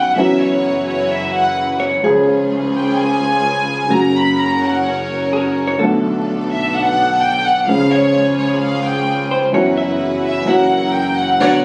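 Heard as if captured on a phone in the room, with vinyl crackle and a moderate studio reverb, this passionate, dramatic tango excerpt moves with a rubato feel. An up-front violin section carries the solo throughout with a soft, floating, sul tasto tone, over smooth vintage grand piano accompaniment, clear symphonic string stabs with light vibrato and a focused, bowed double bass. A clean, picked hollow-body electric jazz guitar adds a second line from 1.8 s and again at 9.3 s, before a band accent at 11.4 s.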